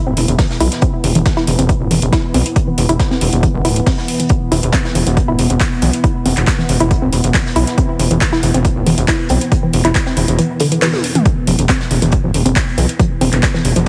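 Heavily compressed, radio-style sound with light digital ambience frames this driving, intense peak-time techno excerpt, where a punchy up-front electronic kick and a gritty, saturated sawtooth synth bass with sidechain pumping anchor a woody, wave-folded pluck riff treated with chorus, overdrive and delay. A deep, moody detuned pad drones in the background, a techno kit adds handclaps, metallic hats and toms, a very quiet acoustic kit plays hi-hat and snare with brushes, and a drum fill arrives at 10.8 seconds.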